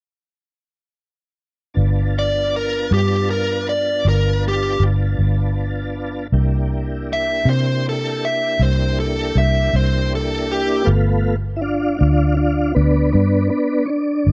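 A slow blues rolls along in 12/8 at 53 BPM, its straight, unhurried feel setting a laid-back, soulful mood in G mixolydian. A dark, round, foam-muted electric bass sits up front with a punchy, amped tone, anchoring the changes from G7 to C7 and on to G9. A smooth, clean tonewheel organ holds sustained chords through a slow rotary speaker and chorus vibrato. An overdriven, picked lead guitar with a warm edge carries the melody until 10.9 s, when the organ takes over as the solo voice through the close at 14.3 s. The dry, close 1970s-style studio sound gains a touch of digital ambience, and the excerpt is cut from a longer piece.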